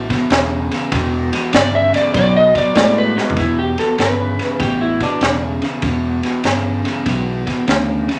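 A swung 4/4 shuffle drives this soulful, smoky electric blues, cut from a longer piece. A crunchy, saturated breakbeat kit of punchy kick, high-tuned snare, toms and dark ride cymbal sits up front beside a round, fingered electric bass, while a bright, twangy guitar through a small old amp picks a slightly broken-up riff coloured by vibrato. An electric slide guitar enters at 1.6 s with a warm, gently broken-up melody, carrying on past the brief drum fill that leads into the second section before stopping at 5.4 s, while a moderate studio reverb lends the whole band some space.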